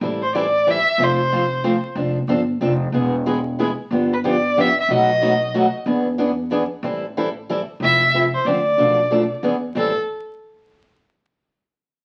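Crackle from a very old 78 rpm record sits over a moderate studio reverb, giving this short fragment of acoustic string swing in the jazz manouche style a dusty, far-off glow. The mood is bittersweet and virtuosic, swinging in a lilting three-beat waltz. A boxy, parlour-sized steel-string guitar, picked and placed up front, carries the accompaniment throughout, while a woody upright bass with gut strings plays pizzicato in a dark, thumpy low register beneath it. A single bowed violin carries the melody in short phrases starting at 0.2, 4.1 and 7.8 seconds, its nasal tone colored by vibrato and portamento. The harmony moves from minor chords through a chain of dominant sevenths, and a new section begins with the last violin phrase before the line settles back onto the home minor chord.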